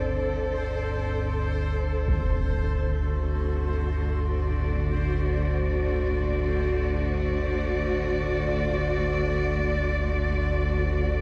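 A deep, ominous drone rumbles up front from the start beneath a dark, bowed cello section holding lush sustained chords with expressive vibrato, while a very quiet bronze singing bowl rings in meditative arpeggios and a bright, resonant sawtooth texture bubbles through random filter steps, a huge impact strikes in the background at 2.1 s, and the whole free-time excerpt of cavernous, desolate dark ambient drone is soaked in plate reverb.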